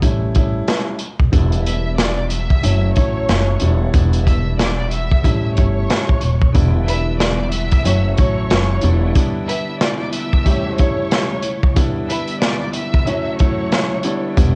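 A tough, reflective boom-bap hip-hop cut at 92 BPM in E dorian opens on a gritty, saturated breakbeat kit and a dark, growly pizzicato upright bass, with an intimate, woody upright piano, its action noise audible, comping underneath. Piano and drums carry a cassette-tape colour. At 1.7 s a distant, lush violin section enters with the melody, full of vibrato and portamento and trailed by tape echo. At 6.5 s a piping, lightly overdriven tonewheel organ adds sustained chords through a slow rotary speaker, joined by floating sul tasto string stabs in the background, while the bass drops out at 9.1 s, leaving an open break.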